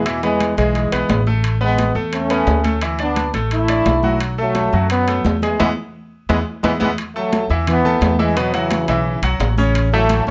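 Festive, sunny salsa at a brisk straight four, cut from a longer piece, with a punchy, tight trombone section carrying the melody up front with light vibrato over a brilliant grand piano accompaniment and a woody pizzicato upright bass. High-tuned congas sit in the background while ringing metal-shell timbales join from 0.1 seconds, and the band hits an accent from 5.6 to 7.0 seconds as a drum fill starts at 5.9 seconds before the opening section returns. The close, detailed sound carries light reverb.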